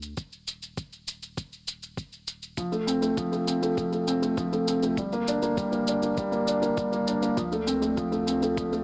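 A straight 4/4 pulse at 100 BPM opens the excerpt, with an electronic shaker and a muffled, thumpy kick drum (sampler-style and pitched down) arriving by 0.2 seconds. Underneath, a round sine sub bass sits deep in the background, sustained and pumping against the sidechain. This melancholic, cinematic piano electronica excerpt is in G minor, with tuning at A4 = 442 Hz. At 2.6 seconds a felt-muted upright piano steps up front with a soft, intimate riff, trailed by tape echo, as the harmony moves from F to Gm to Dm7. The overall sound is mellow and close, with light reverb and a small-speaker character, and the passage is cut from a longer piece.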